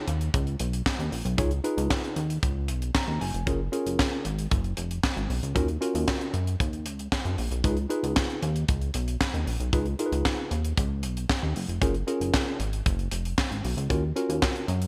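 A light reverb and small-room ambience frame this short, smooth slice of early-eighties boogie funk, cut from a longer piece and moving at a danceable 115 BPM in a straight 4/4. A tight, up-front acoustic drum kit drives it with a high-tuned snare, a tight kick, hi-hat and handclaps, the kit carrying a gated reverb. Underneath, a glossy, retro chorused synth bass sits prominently, blending pulse, sawtooth and sine tones with a plucky filter and fast attack into a sustained, mellow low end. A worn, slightly out-of-tune tine electric piano supplies mellow, clean accompaniment and slips in a brief fill from 2.7 to 3.5 seconds. The harmony cycles through C#7, F#maj7 and D#m7, giving the groove a relaxed, polished glow.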